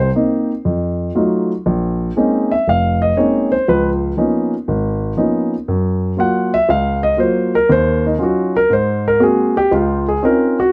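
A swinging 4/4 feel at 119 BPM carries this playful solo jazz excerpt in Db major, where an up-front grand piano with short sustain moves from Cm7 through F7b9, Bbm11, Db13 and Gbmaj7 to settle on Dbmaj9 near 9.7 seconds, set in light reverb with a dark production.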